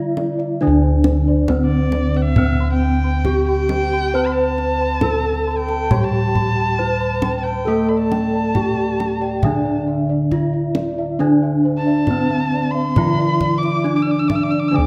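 A wet recital-hall reverb surrounds this serene, shimmering Javanese gamelan excerpt in D slendro, which moves at a calm 68 BPM in a straight 4/4. Bronze metallophones carry the melody and the accompaniment, one ringing under a wooden mallet with the shimmering beats of paired tuning and the other bright under a horn mallet. Mellow bossed gongs played with padded beaters hold the bass, while a softly mallet-struck metallophone and airy bossed gongs spin arpeggios in the background. A deep, close kendang struck with hard hands supplies the percussion, and from 1.7 s a single nasal, smooth erhu adds a bowed second line with vibrato and portamento.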